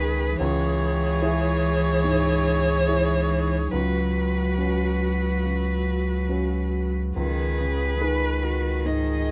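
Reflective and melancholic, this neoclassical excerpt for piano and strings moves with a rubato feel, as a rich, up-front solo violin sings the melody with smooth, even vibrato. Beneath it, a close, intimate cello played sul tasto traces a soft-edged second line, while a woody, slightly detuned vintage upright piano and an expressive viola with vibrato and portamento fill in the accompaniment. A deep, round sub bass holds a sustained low note under a C#m, Bsus2/C# and G#m/C# progression, all set in a moderate large-studio reverb.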